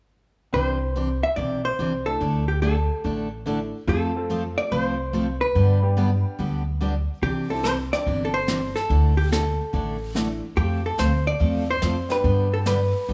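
A thumpy, woody pizzicato upright bass sits up front in this swinging, down-home western swing excerpt at 144 BPM in C major, under a dark, clean hollow-body electric guitar melody, a full-bodied picked steel-string acoustic with finger squeak, and an intimate upright piano with audible action noise, all in light reverb, before a brushed jazz kit with a boomy kick joins at 7.2 seconds.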